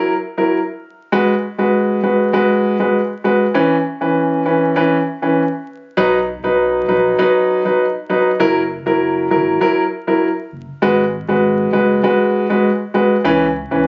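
A warm grand piano opens this bouncy, hypnotic dancehall piece at 99 BPM in 4/4 with a straight feel, sitting up front as it plays accompaniment chords in G# minor in the middle register. The harmony cycles through F#7, G#m7 and C#m7, then moves to B as the second section begins at 6.0 s. At that point a deep, round sub bass with a sine-like tone enters low in the background, its notes starting quickly and holding sustained under the piano until the cut at 13.9 s. A moderate spring reverb and a small room ambience surround the sound. It was captured on a phone in the room, with vinyl crackle, compression and a dulled top end.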